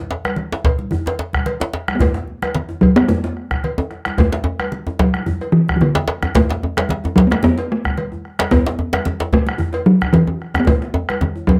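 West African traditional drum ensemble music, powerful and driving at 111 BPM in 4/4 with a light sixteenth-note swing, heard in a short cut from a longer piece. Two djembes, one deep and close with soft hands and one medium-tuned with metal rattles and a vintage, band-limited tone, join bright thin-skinned congas, a round up-front bombo and a metallic cowbell from the first fraction of a second, before the talking drum enters at 2.0 s to carry the melody between D3 and B3 with a short ring. The dry, detailed recording places the talking drum most prominently, and drum fills break through at 3.8 s and again at 10.7 s.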